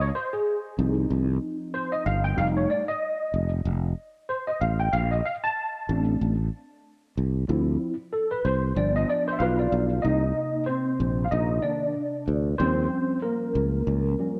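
Smoky and nocturnal, this short jazz-hop excerpt moves at 94 BPM in C minor with a swung sixteenth-note feel, as a worn, slightly out-of-tune tine electric piano, lightly overdriven through a combo amp with ensemble chorus, carries the lead across chords like Dbmaj7, Bbmaj9 and Cm7. Underneath, a sustaining fretless electric bass sits up front with a bright, growly, direct tone, holding the low end until 14.1 seconds. The piece is cut from a longer work, shifting to a new section at 10.0 seconds, with a light reverb around the close-up sound.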